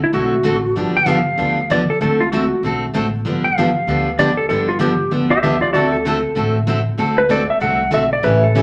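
A clean, compressed lap steel guitar opens this cheerful, playful western swing excerpt with a dark, sliding line full of volume swells at a brisk 193 BPM in D mixolydian, joined at once by a bright, full-bodied picked acoustic guitar and a woody, thumpy pizzicato upright bass as the D7 and G7 chords alternate in a wet club reverb.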